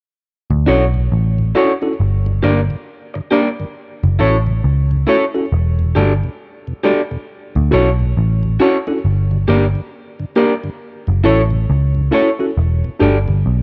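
Reggae in D major at a slow 68 BPM, with a lilting swing on the sixteenths, this short passage cut from a longer piece feels romantic and sweet. A dark, round, foam-muted electric bass sits up front and anchors the low end, while an electric guitar through a small old amp plays picked stabs with a slightly broken-up, lo-fi tone. A worn tine electric piano, clean and a little out of tune, fills in the middle register, and a soft, flute-like tonewheel organ with audible key click and a slow rotary speaker sits in the background. The harmony cycles twice through Dmaj7, Gm, F#m7 and Em11. All four parts enter within the first second and carry on to about 13 seconds, captured in a dry, close 1970s-style studio sound with little reverb.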